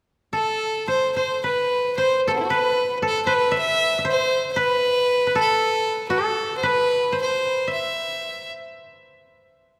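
Drenched in a long church reverb, this still, austere fragment of Japanese traditional chamber music moves in a loose rubato 2/4, with a single close, biting bowed fiddle carrying the intense melody with light vibrato until 8.5 seconds, while a dry, woody koto plucked with fingerpicks sits up front as a second line and rings on until 9.2 seconds.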